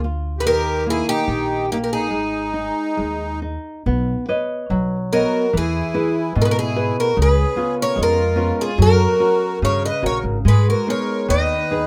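A picked twelve-string acoustic guitar opens this mournful, passionate fado-style ballad, its shimmering, octave-doubled melody sitting up front with a slightly boxy, parlour character, joined at once by a fingerpicked nylon-string guitar and a pizzicato upright bass. The nylon-string guitar fills out the accompaniment with a classical touch, and some finger squeak can be heard. The woody, thumpy upright bass sits prominently in the low register. At 0.4 seconds a close-miked accordion enters with a reedy, sweet second line, its light tremolo tuning adding a gentle waver to its dry, full tone. The music moves freely in a rubato 2/4. From 3.9 seconds the harmony settles into a progression of Badd9, E, C#7, F# and G#m. The small room adds a modest reverb, and the recording is cut from a longer piece.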